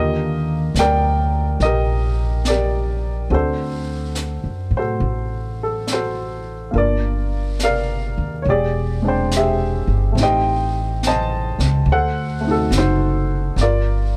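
A dark, mellow baby grand piano with audible action noise sits up front beside a woody, growly pizzicato upright bass in this smoky, wistful jazz ballad at 70 BPM with a swung feel, moving from Ebmaj7 through D7 and Gm7 to an E7alt, Am7b5 and D7b9 before settling on Gm7, while a distant, roomy brush kit with a high-tuned snare and hi-hat joins at 0.8 s in a dry mix.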